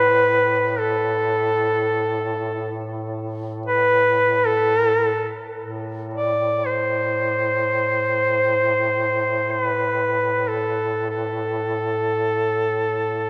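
A moderate cathedral reverb, ringing for about 4.9 seconds, wraps this short cut from a longer piece of Caucasian folk music in a resonant space. It is a lament in free time, mournful and full of longing. One duduk carries the melody up front with a soft attack, scooped notes and vibrato, moving within the span of A4 to D5. A second duduk sits further back as a distant, roomy drone on A2, also shaded with vibrato and scooped pitches, and it sounds beneath the melody from start to finish. The melodic phrase is stated once and then repeated from 5.6 seconds, giving the whole 13.3 seconds the feel of a single grieving thought returned to.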